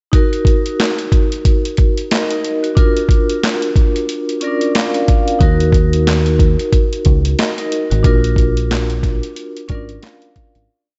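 A laid-back boom-bap hip-hop beat at 91 BPM with a swung sixteenth-note hi-hat feel, thumpy pitched-down kick, and high-tuned snare layered with handclaps drives this gritty, reflective piece in Eb harmonic minor, where a ringing, cassette-tinted vibraphone with slow motor vibrato loops spread Ebm and Bb chords with grace notes and a short fill at 4.1 seconds, a round, dark fingered electric bass joins at 5.4 seconds, and light digital reverb frames it all before a fade-out from 8.0 seconds.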